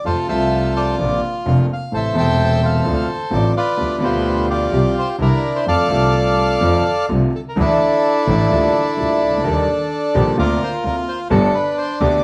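Tense and melancholic, this tango excerpt moves at 128 BPM in 4/4 with a rubato feel, centred in F major. A reedy, dark bandoneon carries the melody up front, its close-miked, dry sound full and present. Beneath it, a concert grand piano supplies intimate accompaniment with deep bass and audible action noise, its smooth tone carrying a vintage character. A bowed double bass, played by one player, adds an intense, biting line with vibrato and an airy bow. The harmony moves from F through Bbadd9, Am and Dm7 before settling on F6, then shifts at 7.6 s through Dsus2, Gm7/D and Eb, ending on Gadd9 at 11.3 s. The band plays live together in one large studio with wet reverb, and a layer of vinyl crackle sits over the sound.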